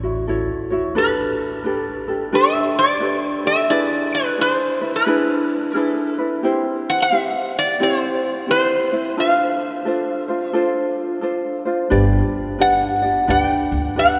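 Sunny and languid, this swung Hawaiian excerpt sets a metallic, nasal resonator slide guitar played with fingerpicks up front on the melody over a light, fingerpicked ukulele, while a woody, thumpy pizzicato upright bass on gut strings sounds briefly at the start and returns at 11.9 seconds, all bathed in a wet cathedral reverb.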